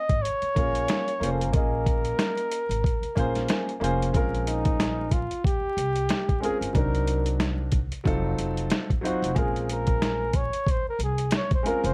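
A swung boom bap groove of gritty, pitched-down sampler drums with a thumpy kick sets a cool, smoky jazz-hop mood, as a woody pizzicato upright bass and an up-front concert grand piano fill out the dark, vinyl-crackled production beneath a breathy, whispered flugelhorn whose intimate melody becomes a solo from 4.1 seconds in this excerpt.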